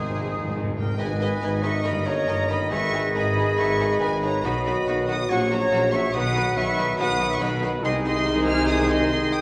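A straight, fast 4/4 pulse at 140 BPM drives this dramatic yet graceful and lively romantic orchestral passage in G# minor, cut from a longer piece, in which a lush, vibrato-rich violin section carries the high melody over a bright, airy silver flute, a focused second violin section, a close-miked clarinet and a distant oboe; a dark, punchy bassoon and an intense viola section accompany, a mellow trumpet section adds tight stabs, and a clear cello section, a roomy tuba and soft-attack double basses hold the bass; very quiet timpani open with a fill and stop at 3.3 s, French horns sustain chords from the start, trombones join them at 1.0 s, and the orchestra sits inside a wet scoring-stage reverb.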